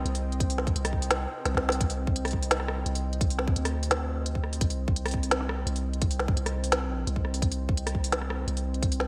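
Spacious and dark, this short cut from a longer piece is half-time drum and bass at 171 BPM in 4/4, resting on a C minor chord throughout. A moody analog pad built from detuned sawtooth and triangle tones with a sub octave holds sustained chords from the start, its slow attack softened by chorus, roughened by vintage 12-bit sampler grit and pulsed by sidechain pumping. Beneath it, a long 808-style bass sits up front with a deep, mellow sine tone, a fast attack and a decaying tail. The drum kit comes in at 0.1 seconds with a woody snare, smooth hi-hats and rim clicks wrapped in gated reverb, and it plays a brief fill between 1.5 and 1.8 seconds. A tight, layered electronic kick joins at 0.4 seconds, re-recorded in a small room and placed up front. Light reverb and digital ambience give the whole a bright 1980s-style digital sheen.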